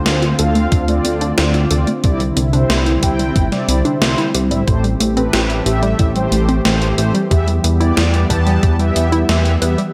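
Set in a light reverb, this driving, nocturnal synthwave excerpt at 91 BPM in 4/4 moves through Dm7, Cadd9, Am7 and Em: a smooth, detuned analog pad pumps its sustained chords in the background, and round, brassy synth stabs with vibrato, chorus and delay cut across it. A glossy chorused synth bass sits up front, while a tape-tinged gated 80s digital drum machine plays hi-hat and a gated-reverb snare. A lo-fi, warbling pluck spins dusty cassette-tape arpeggios through chorus and delay, and a thumpy electronic kick drum enters at 0.7 seconds and stops at 8.8 seconds.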